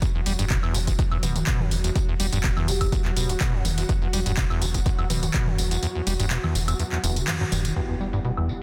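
A squelchy, resonant square-wave acid bass riff with dub echo drives this raw, gritty acid house excerpt, over a punchy, tape-warm kick that drops out at 5.8 seconds, an up-front analog drum machine of congas, handclaps, hi-hat, tambourine and woodblock, a deep, round analog bass with tube saturation, and lush, pumping string-machine chords, while a brief ringing vibraphone note sounds at 2.7 seconds before overdriven electric piano stabs and an electronic impact arrive at 7.8 seconds on E minor.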